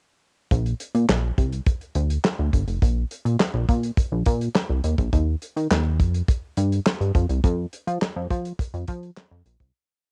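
At 0.5 s a chorused synth bass and a damped 70s drum kit start together in a smooth, feel-good early-eighties boogie funk breakdown at 104 BPM in Bb major. The glossy bass mixes pulse and sawtooth tones with pulse-width modulation and a filter pluck, playing a syncopated boogie line that sits up front. The dry acoustic kit carries a tight kick, hi-hat, and a fat snare layered with handclaps, given a cassette-tape character, in a home recording with little reverb that fades out from 7.4 to 9.7 seconds.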